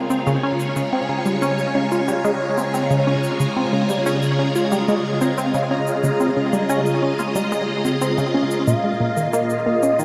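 A sequenced synth riff drives this 91 BPM passage in straight 4/4, cut from a longer piece of ambient space music with a mysterious, expansive mood. The riff is tight and up front, its detuned sawtooth and square tones plucked through a filter with a mellow edge, coloured by chorus and tape echo. Alongside it, a phased string machine holds sustained chords from Bb2 to F5, swirling and vintage, brightened by ensemble chorus and phaser, while a pulsing, tempo-synced gated texture glimmers softly in the background. Shaker and congas, tape-warm and re-recorded in a small room, sit low in the mix with their own echo from 0.1 seconds. At 8.7 seconds a full-bodied pulse-width lead enters between Eb5 and G5, shimmering and retro with vibrato and a dark tone. The whole is bathed in a wet plate reverb that gives the mix a deep, echo-heavy space.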